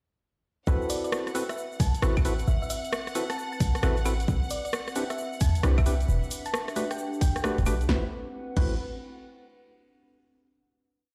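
Heard through a big sound system in a bare stone room with light reverb, this complete late-night, bouncy two-step garage piece in A dorian runs at 133 BPM with a heavy 16th-note swing, built on a tight layered kick, a short punchy 808-style bass up front, overdriven analog drum-machine snare, rims, claves, hats and crash, and a grainy shaker in the background. Hollow, chorused organ stabs with tape echo play syncopated rootless chords over Am69, Cmaj7 and Em11, while a warbling, nostalgic tape-like pad pumps beneath them and a dark, tine-like thumb-piano pluck with 12-bit grit adds short answering phrases from 0.9 to 7.4 seconds. A biting, close violin section holds a high F#5 through the drop until 7.9 seconds, when the final Am69 chord arrives; the kick, drum machine, organ and bass carry on briefly before the pad rings out alone to 9.7 seconds.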